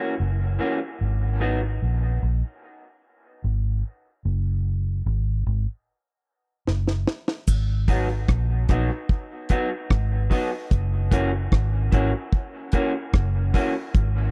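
A straight 4/4 pulse at 74 BPM carries this deep, spacious dub reggae excerpt in G# minor, with a round, foam-muted fingered bass holding the low end over chords moving from F#7 through G#7, F#sus2 and G#m7. An electric guitar through a small old amp, slightly broken-up and lo-fi, sounds briefly at the start and returns at 7.9 seconds, treated with spring reverb and dub echo, while a dark, smooth reggae kit with a high-tuned snare and tight kick arrives with a fill at 6.7 seconds. A quick cabasa accent marks the turn into the second section, heard in a close, dry 1970s-style studio sound.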